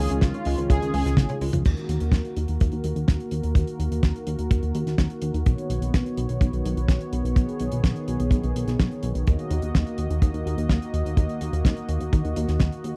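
A glossy, detuned synth bass sits up front alongside a tight, dry kick drum, driving this nostalgic, danceable italo disco cut taken from a longer piece. In the opening moments, a bold, nasal synth brass melody with vibrato and tape echo plays alongside a round analog pluck arpeggio with phaser, tucked in the background; both fall away by 1.6 seconds. A drum fill on the damped 70s kit, with its fat snare, leads into the main section at 1.7 seconds. Throughout, a smooth, chorused pad holds sustained minor-key chords in a close, intimate studio sound.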